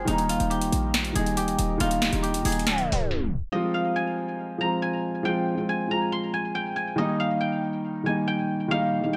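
This menacing, brooding hip hop and trap piece in F minor moves at 139 BPM with a half-time feel, and it is cut from a longer work. A silvery, ringing guzheng played with fingerpicks carries the melody up front, touched with a low-pass filter and digital delay. A mellow concert grand piano with deep bass plays the accompaniment beneath it, also filtered. A very quiet, detuned sawtooth pad holds sustained chords with chorus and slow attack. A punchy, tight 808-style bass and a booming analog drum machine with crisp snare and metallic hats, re-recorded in a large room, drive the opening over an Eb chord. A tape stop begins at 2.7 s, drums and bass drop out at 3.1 s, and from 3.5 s guzheng and piano continue over Fm and then Eb, all in light reverb.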